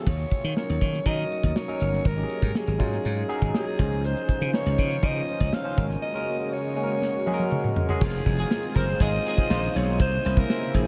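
A gritty, breathy alto saxophone opens this breezy, upbeat slice of polished 1980s jazz-funk pop, its raspy lead carried on a diffuse ambient delay over a barky tine electric piano that is lightly overdriven and shimmering with analog chorus. Slap bass and a modern studio drum kit join almost at once, the bass punchy and growly up front while the kit sits close with a tight kick, medium-tuned snare, hi-hat, toms and crash cymbal under a dark, rolled-off top. At 4.0 seconds a lush, detuned sawtooth pad fades in behind with slow-attack chords that warble with vintage chorus. A drum fill leads into a new section at 8.0 seconds, where a clear jazz horn section adds a soft-attack second line with light vibrato until 9.5 seconds. The whole dreamy mix is soaked in a huge ambient reverb, and the passage is cut from a longer piece.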